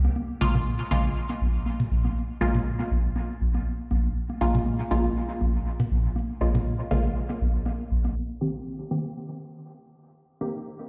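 Dub techno with a deep, meditative mood, cut from a longer piece and carried by a lightly swung groove. A soft, round sub bass sits up front, its sustained tone rooted on a low note, while electronic congas and toms with an analog, tape-warm character trail dub echoes into a large room. From 0.4 seconds a muted, detuned chord stab enters, mellow and plucky through its filter, colored by phaser and dub echo and spanning a middle register. The bass and percussion drop out at 8.1 seconds, leaving the stab alone as a filter sweep runs from 8.2 seconds and the harmony settles on a Cm7 chord. The whole piece sounds as if played on a big sound system in a bare room, bathed in lush hall reverb and rounded off by a low-pass filter.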